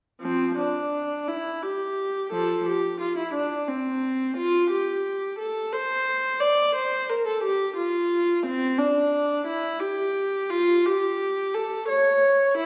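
A single viola opens at 0.2 seconds, playing alone in a baroque-style suite movement in F major, flowing and dance-like in a lilting 6/8. The pulse sits around 58 dotted quarters per minute, but the player stretches and relaxes the time freely, giving the line a spoken, rubato quality. The bowed tone is warm and expressive, colored by vibrato and gliding portamento as it moves between F3 and D5, and the instrument stays up front even as the listener seems placed further back in the room. A wet recital-hall reverb lingers for about 1.5 seconds around each phrase, wrapping the solo line in a soft halo of space. This fragment of a longer piece ends at 12.7 seconds.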